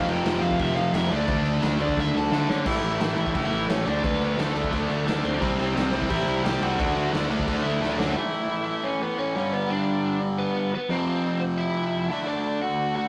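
Rowdy and rebellious, this punk rock excerpt charges along at 175 BPM, with a biting, overdriven lead guitar that opens with a solo over an up-front distorted riff guitar, a second distorted guitar and a double-tracked high-gain guitar in the background, a growly fuzz bass and a gritty, raw garage drum kit with a punchy kick and medium-tuned snare, whose fill at 7.8 seconds gives way to the lead and up-front riff guitars carrying on alone until 13.1 seconds, all captured in a rough, tube-saturated rehearsal-room sound with light reverb.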